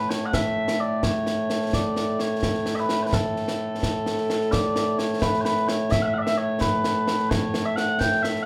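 Stirring and proud, this short cut from a longer piece of Scottish traditional pipe music moves at 86 BPM in a straight 6/8, counted in dotted quarters, in A major. Mellow small bagpipes carry the melody from start to finish, their sweet, continuous tone sitting up front and ranging from A2 to G5. Concert snare drum and concert bass drum enter at 0.1 seconds and play until 8.4 seconds, acoustic and up front, with dark cymbals and a small-room character. The same strain is heard twice, the repeat starting at 4.5 seconds. The band plays live in one room, and a moderate large studio reverb lends the whole a sense of space.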